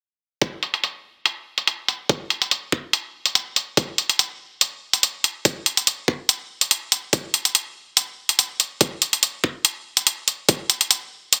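From 0.4 seconds, aggressive, chaotic heavy wobble dubstep at 143 BPM in a swung half-time 4/4 opens with up-front, layered electronic hi-hats, low-pass filtered and re-recorded in a large room, alongside a knocking, overdriven electronic kick, high-pass filtered and re-recorded in a small room; the kick stops at 10.6 seconds while the hats carry on to 11.4 seconds, all within a dense, heavily limited, nearly dry modern master.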